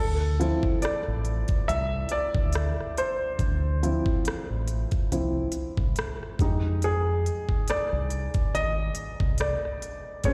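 R&B and neo-soul at a slow 70 BPM with a lightly swung 16th feel, this sultry, introspective excerpt from a longer piece features an intimate baby grand piano with audible action noise and slapback echo, a dark, round fingered electric bass, and a layered electronic drum kit with knocking kick, crisp hi-hat and rim click entering at 0.4 seconds, moving from Dm9 to Fm9 at 6.4 seconds as if heard live through a venue's PA in a reverberant recital hall.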